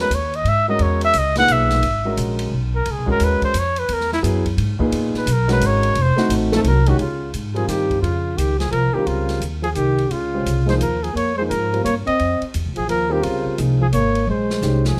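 A swung 3/4 pulse at 173 BPM drives this searching, spiritual modal jazz excerpt, with an open acoustic drum kit of dark cymbals, a medium-tuned snare and a boomy kick sitting airy and polished in a small room beneath the band. Pizzicato upright bass on steel strings sits up front with a woody, warm tone, while an upright piano comps with a warm, woody, open sound and long sustain. A mellow, smooth-topped trumpet carries the melody from the start, soloing through the opening in C# dorian with a touch of plate reverb. At 6.5 seconds a dark, close-miked trombone joins with light vibrato as a second line, just before the music shifts to Bb dorian at 7.0 seconds over a Bbm11 chord. The drums close the passage with a fill at 14.3 seconds, all set in a light reverb.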